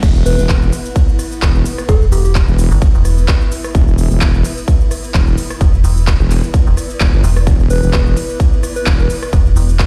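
A punchy electronic kick and a heavy, saturated wobble bass open this gritty, bouncy bass house cut at 129 BPM, with a light swing on the sixteenths and an E5 chord underneath. A layered big-room drum kit, crisp in the hats and tape-tinged, fills in with handclaps, shaker, rim clicks, and ride and crash cymbals, all sitting lower in the mix than the kick, while a cloudy, evolving granular pad with a slow attack breathes behind everything with its own reverb and sidechain pumping. At 0.3 seconds a soft struck synth lead enters, round and keys-like with a vintage warble, chorus and delay, playing a short, gentle figure high above the bass, then returns near the end. At 1.9 seconds a metallic, digital FM bass joins the chorused, sidechained wobble bass low down, both sitting up front, before the wobble bass drops out at 9.1 seconds. The mix itself is fairly dry, yet it sounds as though it is booming through a big sound system in a bare stone room, and this fragment is cut from a longer piece.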